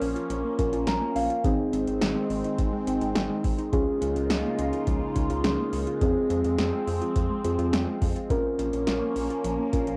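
Captured on home cassette with a small room's modest reverb, this driving, nocturnal synth-pop excerpt moves at 105 BPM through Bbm, Ab, Db6 and Fm, accompanied by muted, warbling synth keys that slip in a brief fill between 0.6 and 1.4 seconds. A swirling, detuned analog pad sustains chords under phaser and chorus, while a soft, round pluck traces arpeggios with analog delay in the background. A rubbery, hollow square bass with transformer saturation sits beneath an up-front electro drum machine whose deep kick, punchy snare and metallic hats carry a gritty overdriven edge.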